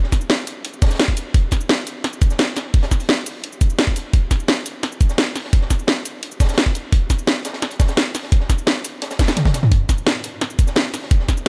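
A knocking electronic kick drum sits up front, layered with a produced drum and bass kit whose cracking snare, hi-hat, shaker and toms drive this dark, futuristic drum and bass excerpt in a straight 4/4. Beneath them, a crunchy acoustic breakbeat kit with a high-tuned snare and hats adds gritty, saturated texture from the background, its top end rolled off. A drum fill breaks through at 9.2 seconds, all under light reverb and studio ambience.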